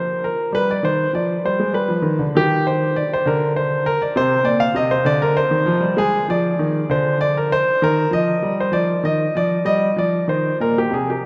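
In a rubato 6/8, this flowing, introspective baroque-style suite movement for solo grand piano, cut from a longer piece, sets a clear, smooth, vintage-toned instrument up front with long sustain inside a wet cathedral reverb, its harmony drifting from G7 and Cm9 toward an Eb chord near 9.6 seconds.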